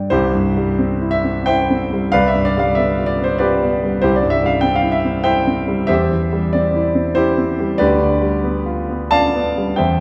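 A smooth, vintage-toned grand piano sits up front and plays alone from 0.0 to 10.0 seconds in this fragment of a passionate romantic character piece, ranging from C2 to A5 in C major, tuned to A4 = 441 Hz. The classical music in 3/4 time moves with free rubato at 83-99 BPM, its harmony turning between C and G7 over C, D and E bass notes. A wet recital hall reverb, about 1.6 seconds long, gives the recording a warm sense of space.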